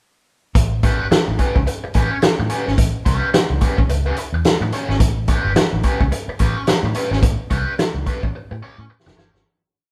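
An up-front vintage drum kit, with a fat snare and tight kick, drives this energetic funk piece at 108 BPM, laying down a syncopated groove with ghost notes and swung sixteenths. A dark, round, foam-muted fingered bass plays a syncopated riff anchored on the downbeat, with ghost notes and chromatic approach notes, while a biting overdriven guitar enters at 0.8 seconds with sixteenth-note rhythm scratches through a wah, all over an A9 chord in A mixolydian. The whole short piece is a breakdown played live in a large studio with moderate reverb, fading out from 7.2 seconds as a drum fill arrives at 8.3 seconds.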